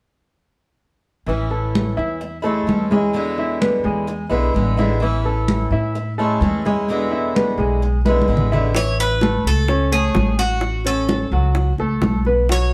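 A bright, metallic Cuban tres with doubled strings takes the melody at 8.8 seconds in this sunny, relaxed slice of Cuban son and guajira, joined a moment earlier at 8.7 seconds by round, low-tuned bongos struck with hard hands. Before that, a boxy swing-style acoustic guitar with fresh strings and audible finger squeak picks out the accompaniment. Warm grand piano arpeggios, a woody, thumpy gut-string upright bass up front, and thick-skinned congas played with soft hands fill out the sound of a band playing live in a lightly reverberant room.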